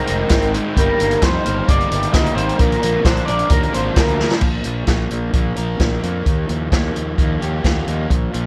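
Upbeat and carefree, this excerpt of 131 BPM indie rock in Bb mixolydian opens with a twangy, slightly broken-up guitar through a small old amp carrying the melody in lush chorus until 4.3 s. Beneath it, a hollow-bodied overdriven semi-hollow guitar riffs throughout, and a bright, raw garage guitar adds its own riff through overdrive, ensemble chorus and digital delay until 4.4 s. A growly, fuzzed fingered bass with tube saturation anchors the low end, while an up-front vintage drum kit with a punchy kick and dark cymbals drives the groove and plays a fill at 4.2 s. Very quiet, crisp group handclaps sit close in the mix, and the whole recording carries a small-room ambience and the worn, warbling pitch drift of old cassette tape.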